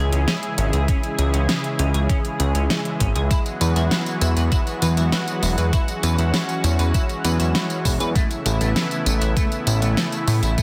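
A straight 4/4 synthwave groove at 99 BPM rides on a layered pop kit with a fat snare, metallic hi-hats and tambourine in studio reverb from the very start, with a thumpy, overdriven electronic kick landing up front from 0.9 seconds. Underneath, a thick, detuned sawtooth analog bass with a wave-folded edge and filter sweep pumps to the sidechain, while a lush, warbling vintage unison pad holds slow-attack chords through C#m, Eadd9 and Aadd9. A clean, picked semi-hollow electric guitar riff sits in the background with analog chorus and delay, giving this cinematic, moody excerpt a dense, heavily limited modern sheen.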